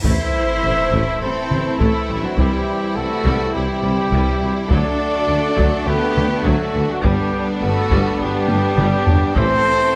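Cinematic, epic orchestral film score at 103 BPM in A dorian with a dark mood, opening on a huge cymbal swell and sub drop as the chords move through Am, C, D and G, while an intense, lush violin section carries the melody over a smooth second violin line, distant violas, background trombone chords and very quiet French horns, with tight, up-front trumpet stabs cutting through, cellos, double basses and a mellow tuba holding the bass, close and dry taiko played with heavy sticks and breaking into a fill at 8.5 seconds, and hard-mallet timpani striking A at 9.4 seconds, all in a lightly reverberant space.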